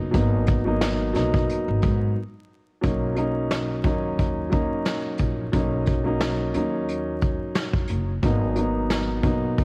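A dark, mellow concert grand piano sits up front in this moody, gritty boom-bap hip-hop excerpt, its audible action noise and deep low end filtered through a cassette-tape haze. A woody, growly pizzicato upright bass and a vintage brush kit with a punchy kick and rolled-off top hold a swung 89 BPM groove in 4/4. After a short break at 2.2 seconds, the harmony moves from G#m7 to Bmaj7 at 2.8 seconds before returning to G#m7, all in a dry home-cassette sound with vinyl crackle.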